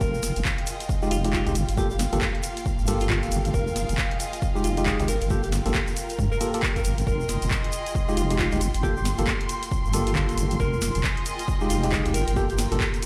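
UK garage in a bouncy, moody two-step swing, this short cut sets a distant, vibrato-laced jazz alto saxophone melody over a deep, dark wobble bass with chorus, punchy tape-warm electronic kick and drum-machine handclaps, hi-hat and snare, a grainy egg shaker, bell-like electric piano stabs entering at 1.0 s through a low-pass filter and digital delay, and lush bowed violins and a rich string section pumping with sidechain as the strings fade in, all cycling between Fm9 and Gm9 in a stone-room reverb.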